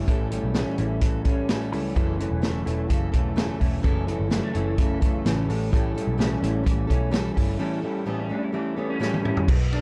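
A straight 4/4 pulse at 128 BPM drives this wistful, bittersweet slice of jangly indie pop, cut from a longer piece and moving from A7 to F#m7 and back to A7. A punchy, up-front vintage drum kit with a medium-tuned snare and 12-bit sampler grit sits over a dark, round, foam-muted picked electric bass. Meanwhile, an electric guitar through a small old amp plays slightly broken-up arpeggios coloured by ensemble chorus, and a fingerpicked plugged-in steel-string acoustic guitar adds accompaniment with audible finger squeak. The dry, gritty recording carries little reverb, and a break arrives at 7.6 seconds, capped by a drum fill from 9.0 to 9.5 seconds.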